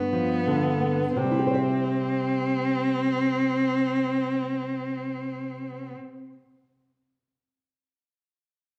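A rich, focused cello sings a lyrical, serene melody with bowed vibrato up front, over a small, thumb-plucked nylon-string guitar with fresh strings, in this brief rubato excerpt of a romantic duo that slows through its opening G7 before settling on C at 1.2 seconds, the cello ending at 5.9 seconds and the guitar at 6.3, all bathed in a wet recital-hall reverb.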